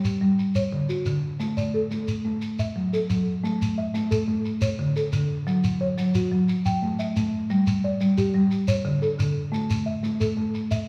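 A rippling 12/8 cycle in the southern African traditional style carries this hypnotic excerpt, where a buzzing marimba played with soft mallets spins woody, round arpeggios up front over a grainy, close shekere, the pair blooming in a reverberant recital hall as the harmony moves through D, Asus4 and F#m before settling on open fifths from 3.4 seconds.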